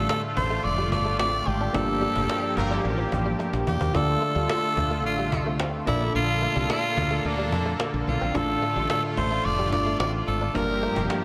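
Soaked in lush hall reverb with a dreamy studio glow, this moody, urgent slice of 1980s-style pop is cut from a longer piece and moves in a straight 4/4. Up front, a raspy, gritty tenor saxophone carries the melody with vibrato, wrapped in shimmer reverb and tape echo. Beneath it, mellow electric-piano-like synth keys with chorus and a detuned sawtooth analog pad with tremolo fill out the harmony over a Dm/A, Gm7, Dm and Bbmaj7 progression. A very quiet, twangy clean electric guitar plays a picked riff, while a round, dark fretless bass and a faint cajon in the background hold the groove. A brief stab from a horn section with light vibrato lands at 2.6 seconds during a band accent, and a drum fill follows at 3.4 seconds.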